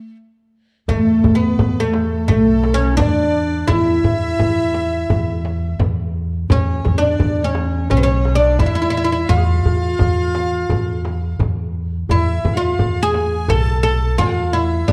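Passionate and festive, this excerpt of a Turkish makam ensemble in E makam hicaz moves at 86 BPM in a straight 4/4, opening with a bright, woody, fretless oud carrying the melody up front beside a warm, classical-style clarinet second line, before a rich, earthy bowed chamber violin section, a pizzicato upright bass on steel strings, a clay-shell darbuka set in the background and a very quiet, dry frame drum enter at 0.9 s, all placed in a dark production with moderate recital hall reverb.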